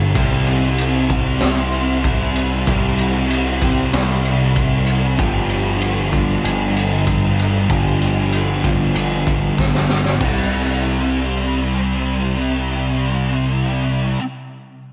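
A straight 4/4 pulse at 96 BPM drives this hazy, wistful shoegaze and dream pop fragment in C major, moving from C to G7 and back to C. Up front, a dark, thick fuzz guitar riff with distortion and ensemble chorus sits over a growling, bright, overdriven picked bass, while a clean, twangy fingered electric guitar drifts in the background through reverse reverb. A raw garage drum kit with a high-tuned snare, boomy kick, gritty saturation and a rolled-off top enters at 0.2 s, plays a fill at 9.6 s and stops at 10.4 s, and the recording carries the light ambience of a small room.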